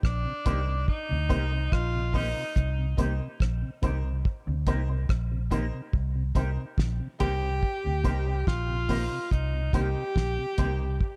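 A clear, distant tenor saxophone with light vibrato and tape echo carries the melody over a round, foam-muted electric bass and a dry, cloth-damped drum kit with a fat snare and tight kick, opening this hypnotic, serious roots reggae cut at 71 BPM in C minor on a single Cm7 chord. A mellow, flute-like tonewheel organ with chorus vibrato and slow rotary speaker slips in at 0.3 seconds, followed by brilliant, slightly detuned upright piano stabs and, in the background, a twangy, scooped electric guitar through an envelope filter, lush chorus and tape echo. Light reverb and a small room ambience surround the short excerpt.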